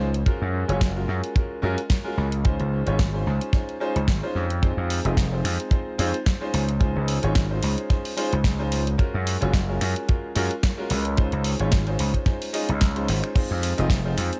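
Groovy and sunny, this nu-disco passage cut from a longer piece rides a lightly swung sixteenth-note feel over a cycle of Gbmaj7, Dbmaj7 and Fm7, with a tight, dry acoustic kick up front, a gritty, overdriven electric slap bass also forward in the mix, a layered electronic house kit of punchy snare, hi-hat, shaker, finger snaps and crash cymbal touched with dub echo, and a brilliant grand piano with short sustain that pumps under sidechain and trails its own dub echo, all set in a small, lightly reverberant room within an echo-heavy mix.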